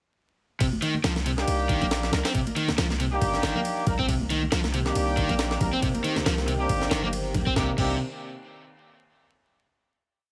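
Funky, swaggering breakbeat in C minor at 138 BPM with a swung 16th feel, a whole piece whose drop runs from 0.6 to 7.6 seconds over a Cm7 before a final chord rings out. An up-front, gritty sampler-style drum kit with a thumpy kick and high-tuned snare plays a looped, edited break with studio reverb, while background congas ring and a boomy 808-style bass carries a mellow dub-style line. An overdriven hollow-body guitar repeats a 16-step riff through tube saturation, 12-bit sampler grit and delay, a clear horn section adds sparse echoing chord stabs, and from 4.7 seconds a lush, detuned sawtooth pad sustains chords with chorus, phaser and sidechain pumping, all under a heavily compressed radio sound with vinyl crackle.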